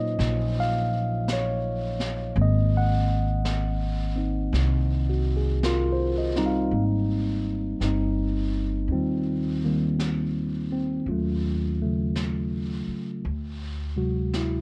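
A dry, cassette-tape sound frames this intimate, tender jazz ballad, cut from a longer piece and swung in 4/4. A mellow, clean tine electric piano sits up front beside a woody, growly pizzicato upright bass, while a brushed jazz kit of snare and hi-hat enters at 0.2 s, heard from a distant, roomy position further back. The harmony moves from Ebm9 and Ab9 to Abmaj9 at 6.7 s, then passes through Ebm7b5 before reaching D7#11 at 13.2 s.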